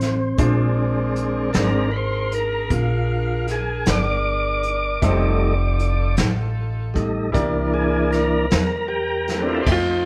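With light reverb on a band playing live in one room, this rollicking, swaggering slow blues excerpt in 12/8 at 52 BPM features a smooth tonewheel organ solo with key click and slow rotary speaker, played up front over Bb7, F7 and C7 chords, backed by woody, thumpy pizzicato upright bass, a muffled, gritty vintage brush drum kit with dark cymbals and a punchy kick, a brilliant upright piano in the background, and a mellow, distant saxophone section holding sustained chords, before a slightly broken-up electric guitar through a small old amp enters at 9.7 seconds.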